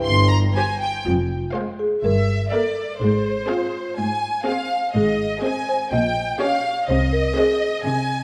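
A playful, whimsical cinematic cue in F minor at 124 BPM, cut from a longer piece, with a magical, mischievous air: a woody, round marimba played with soft mallets carries the melody alongside a lush, vibrato-rich symphonic violin section, while an up-front studio violin section adds a second line from 0.6 seconds, a viola section with portamento fills in, cellos and double basses hold the bass, and a dark bassoon, a very quiet mellow French horn section and a distant tuba sound only briefly at the opening, all within a wet scoring-stage reverb.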